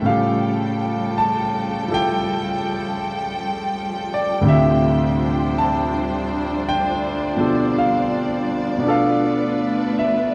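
A clear concert grand piano carries the accompaniment in this short jazz ballad excerpt, ringing with a deep bass and a natural, up-front presence. Alongside it, a rich symphonic string section holds sustained chords, bowed with vibrato in a smooth, even, lush ensemble sound that also sits close to the listener. The mood is melancholic and smoky, with a slow swing feel in 4/4 and harmony that moves from an altered dominant chord through a minor eleventh to a half-diminished chord. Both parts play throughout the roughly 10.3 seconds, bathed in a large studio reverb that lends a dark, warm production. Cut from a longer piece, it feels like a late-night moment suspended mid-thought.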